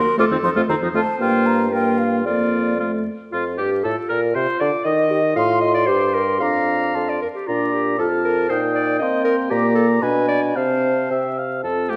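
A dark, vinyl-crackled recording set in a moderate stage reverb frames this graceful, spirited classical-period movement for wind quintet in 2/4 with a rubato feel: an airy, hollow flute with vibrato carries the melody, a bright clarinet and a distant, roomy French horn supply the accompaniment, a vintage-toned oboe adds a second line, and an up-front, mellow bassoon holds the bass, while the harmony moves through Gm7, Cm and Bb to a Bm6 at 10.0 seconds.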